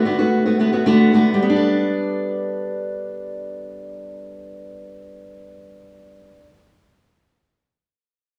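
A fingerpicked steel-string acoustic guitar plays alone from the start, dark in tone and set up front, with finger squeaks audible on the strings as it opens on Bm7/D. At 1.4 seconds it moves to Gadd9 in G major, keeping a sunny, carefree pop feel at 111 BPM in a straight 4/4. A large, wet studio reverb gives the short 6.5-second excerpt a spacious, live-room ambience.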